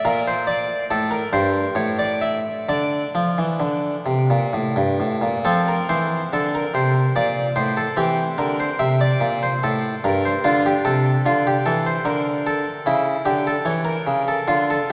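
A long, wet church reverb surrounds a bright, plucked Flemish-style harpsichord on a single set of strings, placed up front and playing alone from start to finish in this short passage cut from a longer piece. The baroque-style suite movement moves in a rubato 3/4 at roughly 63-76 BPM, tuned to A4 = 438 Hz, and its mood is radiant and serene. It opens in D minor and turns to F major at 5.5 s, with harmonies passing through C7, Gmadd9 and C13 before settling on a C#dim7 near 12.9 s.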